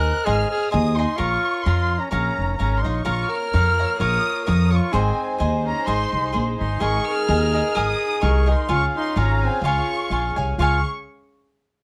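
Romantic and proud, this mariachi-flavored Mexican folk excerpt moves at 128 BPM in a swung 2/4 in D-flat major. A chamber violin section carries the melody high with expressive vibrato and a soft, smooth-topped bowed tone, while a trumpet in classical style plays a second line with light vibrato, a crisp, bright picked cavaquinho supplies accompaniment, and a woody pizzicato upright bass sits up front. From 3.1 seconds a second, intimate violin section adds sul tasto sustained chords in the background, all set in a moderate studio room sound.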